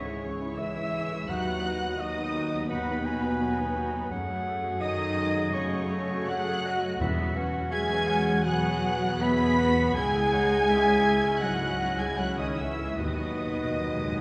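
The passage opens at once on the full orchestra, with muted violins carrying a lush, veiled melody high above a tender bed of sound in this hopeful, emotional film-score cue with a freely breathing rubato feel. Beneath them, a second, darker violin section, a pure-toned flute section, a warm oboe and a mellow, distant clarinet share the second line, while a soft, felt-muted upright piano, its action noise just audible, and rich, muted violas supply the accompaniment in the background. The French horn section sits forward in the mix, holding warm, soft-edged sustained chords that give the music its glow. Dark, con sordino cellos and smooth-topped double basses anchor the bass as the harmony moves through C#m, B/D#, F#madd9 and Eadd9. Timpani played with medium mallets on calf heads enter briefly at 7.0 seconds and return for a closing fill at 13.0 seconds, and the whole ensemble sits in a wet scoring-stage reverb. 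The music is cut from a longer piece.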